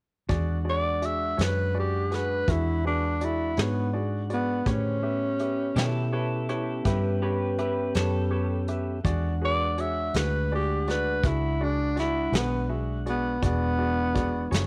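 A swaggering, soulful slow blues in 12/8 opens at 0.3 seconds with a bright, woody upright piano and a flute-like tonewheel organ on sustained chords, turning through a slow rotary speaker. Beneath them sit a dark, round, foam-muted electric bass and a brushed vintage drum kit with a punchy kick and medium-tuned snare, both placed up front. At 0.7 seconds a growling tenor saxophone takes the melody, breathy and raspy, played in subtone with vibrato and scooped notes in a jazz style. Between 5.8 and 8.7 seconds an electric guitar through a small old amp adds a twangy, slightly broken-up second line with harmonic tremolo and tape echo. The harmony moves from E9 to A9 and back to E9 at an unhurried 55 BPM, in E mixolydian, all set in a small room with light reverb, in a short section cut from a longer piece.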